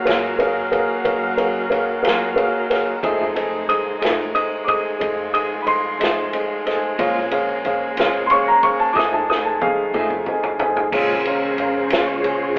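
A dark, mellow concert grand piano opens this smoky, mournful slow blues in 12/8 alongside soft-attack horn chords with light vibrato, slow-rotary tonewheel organ and a woody, thumpy upright bass in the background, joined by a tremolo-tinged clean electric guitar and a distant, roomy vintage drum kit. A polished, up-front upright piano enters at 3.7 s, the drums play a fill from 9.0 s, and the organ takes a solo at 10.9 s, all heard through a telephone-like sound and a wet, large studio reverb in this excerpt from a longer live-band piece.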